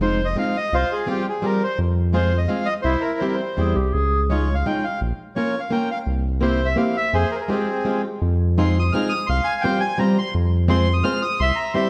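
A nostalgic, whirling musette waltz in F minor at 169 BPM in 3/4, played with a rubato feel and cut from a longer piece, moving through chords such as Fm7, Csus4, Dbadd9 and Bbm. A reedy, boxy bandoneon carries the melody up front over a dark, fingerpicked swing-style acoustic guitar and a round, deep analog bass with a sawtooth-and-sine tone and ring modulation. A clear, classical-style clarinet with a soft attack adds a brief second line from 3.6 to 4.2 seconds, all set in a wet recital hall reverb.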